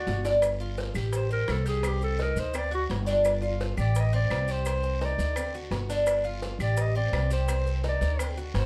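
Warm and sultry, this short cut from a longer Cuban son and guajira piece moves at a brisk 170 BPM in a straight 4/4. A brief drum fill opens it before the clarinet takes a solo from 0.4 seconds, its punchy, distant tone set back in a roomy space with a slapback echo. Beneath it, the Cuban tres picks bright, metallic arpeggios on its doubled strings, while the upright bass sits up front, plucked and growly. Tight, high-tuned bongos played with soft hands, woody claves and grainy maracas stay in the background, joined by a raspy guiro. After opening on Fadd9/G and Am7, the harmony circles through Cmadd9, D7, G5 and Am7b5, and the whole is framed by a dark production with light reverb.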